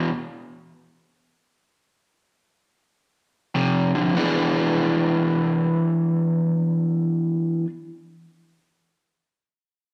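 An overdriven, picked hollow-body electric guitar sits up front in this rollicking yet laid-back blues fragment, sounding briefly at the very start, falling silent through a slowing stop, then returning at 3.5 seconds over E5, F5 and E7 chords until 7.7 seconds, set in a wet, large studio reverb.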